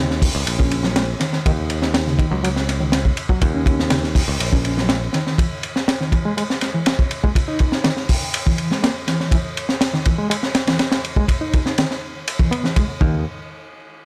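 A reedy, slightly out-of-tune electric piano riff opens this swaggering, funky breakbeat excerpt at 122 BPM, its fast tremolo, tube saturation, low-pass filter and tape echo giving it a worn character over an Eb7(no3) chord that shifts to Emaj7 at 5.4 seconds. A bright, growly picked electric bass joins it from the start and drops out at 5.1 seconds, while a crunchy breakbeat kit sits up front with a punchy kick, high-tuned snare, gritty saturation and dark cymbals in a small room. The bass briefly returns at 13.0 seconds just as the piece cuts off.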